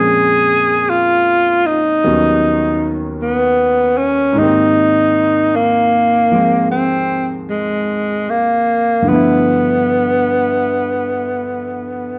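Intimate and late-night in feeling, this short cut from a longer jazz ballad moves at an unhurried pace with a gentle swing. A warm tenor saxophone carries the melody, sitting up front as the soloist with a subtone, vibrato, scooped notes and a smooth top to its sound. Beneath it, a clear grand piano provides the accompaniment, its vintage character and long sustain letting each voicing ring. The harmony drifts from Bbm9 through Eb7alt to a lingering Abmaj9, then turns to G13 near 9.1 seconds. Both instruments play throughout the 12.2 seconds, framed by a moderate large-studio reverb that gives the pair a spacious glow.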